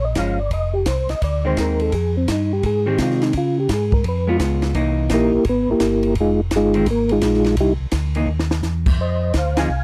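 A swung 4/4 groove at 170 BPM drives this soul jazz organ trio excerpt in F dorian, its smoky, late-night mood carried by a dry, close 1970s-style studio sound. A percussive tonewheel organ takes the melody as a solo from the start, its tone soft and flute-like with second harmonic percussion, chorus vibrato and a slow rotary speaker. Beneath it, a second tonewheel organ plays the bass line, round and dark with light overdrive, chorus vibrato and the same slow rotary. A clean, picked hollow-body electric jazz guitar adds dusky accompaniment up front, while a compact cocktail drum kit supplies an airy small-room feel with dark cymbals, a high-tuned snare and a punchy kick. The harmony moves from Bbm7 to Fm7 through Db7 and C7#9, a drum fill lands at 8.3 seconds, and a band accent arrives at 9.5 seconds as the passage returns to Fm7.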